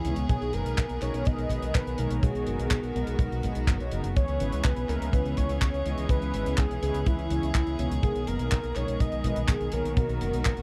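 A thick, detuned sawtooth unison lead carries the melody over bowed, earthy chamber strings, an up-front envelope-filtered fingered bass and a dry, tight funk kit with handclaps and hi-hat in this melodramatic, bittersweet italo disco excerpt at 124 BPM. Mellow synth brass stabs with chorus arrive at 0.1 seconds and a tight acoustic kick at 0.3 seconds, while tape echo trails the lead as the chords move from G#madd9 to C#m7 and back. The sound is a close, dry 1970s-style studio recording.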